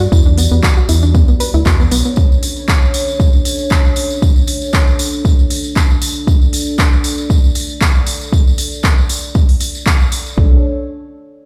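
A hollow, organ-like FM bass sits up front with a dark, percussive bite, fast in attack and quickly decaying. It sounds only in the opening two seconds before returning briefly at 10.4 s. This late-night, moody deep house excerpt moves in a gently swung 4/4. A deep, layered electronic kick drives the groove, joined by a produced drum kit of handclaps and smooth hi-hats and a jingly acoustic tambourine set low in the mix. A dark, detuned analog pad holds slow-attack chords throughout with subtle chorus and sidechain pumping. A soft, round pluck plays mellow arpeggios with chorus and tape echo until 2.1 s. The harmony shifts from Em9 to a rootless Bm7, and the whole track carries the stone-room reverb of a big sound system played in a bare space.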